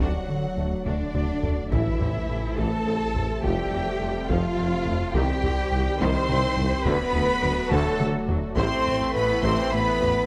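A steady 6/8 pulse drives this relentless, tense blend of orchestral and electronic film scoring, cut from a longer piece: a very quiet taiko ensemble struck with hard sticks sits beneath a smooth synth bass riff, a punchy sub bass with a pitch-drop attack, a clear, vintage tuba and a distant double bass section. Up front, an expressive cello section sings with vibrato, while a violin section carries the melody and a darker, woody violin section traces a second line in the background, over a very quiet viola section, a mellow, roomy French horn section, a detuned analog pad with chorus, and a trombone section that joins just after the start. Drum fills break in at 0.9 s and 7.7 s, an electronic impact lands at 1.7 s, and the whole ensemble sits in a moderate scoring-stage reverb.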